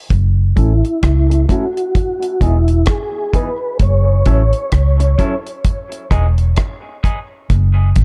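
A dark, warm studio sound with a dry, up-front low end frames this short dub reggae excerpt, cut from a longer piece and moving at a slow, swung, hypnotic pace. A round, punchy, foam-muted fingered electric bass and a deep reggae drum kit of tight kick, hi-hat and rim click run from 0.1 to 8.0 seconds, the kit smooth with a rolled-off top. A mellow, flute-like tonewheel organ carries the melody from 0.6 to 4.7 seconds, its soft tone marked by key click, chorus vibrato, a low-pass filter and tape echo. Beneath it, an electric guitar at the edge of break-up plays picked, compressed accompaniment until 7.2 seconds, filtered and sent through tape echo, with a filter sweep on its part from 3.8 seconds. The harmony sways between F#m7 and Emaj7 before settling on F#m, while a filter sweep runs across the whole excerpt and studio reverb deepens the mood.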